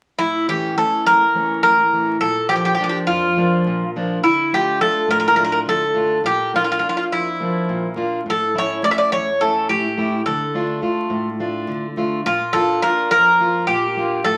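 From 0.2 s a metallic, double-strung Greek bouzouki carries the melody up front over a boxy, parlour-toned picked steel-string acoustic guitar in this moody, bittersweet Greek folk excerpt in 7/8 at 209 BPM (eighths), cycling through A, Bb and Dm beneath a wet studio reverb and a layer of vinyl crackle.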